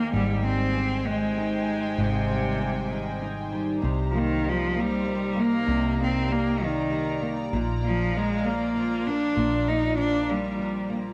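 In a slow, straight six-eight lilt at 65 dotted-quarter beats per minute, this melancholic and dramatic pop ballad in C minor moves from Abmaj7 to Cm7 at 3.8 seconds and on to Bb at 7.5 seconds, a short section cut from a longer piece. A clear, focused solo cello carries the melody up front, bowed with vibrato between C3 and Eb4. Beneath it, a dark, small-sounding nylon-string guitar is fingerpicked and double-tracked as accompaniment. A symphonic string section holds soft-attack sul tasto chords that float, pure and distant, high above. A vintage foam-muted fingered electric bass adds round, punchy, amped low notes. The cello, guitar and strings carry a cassette tape character, and the home recording sits in light reverb with a small room ambience.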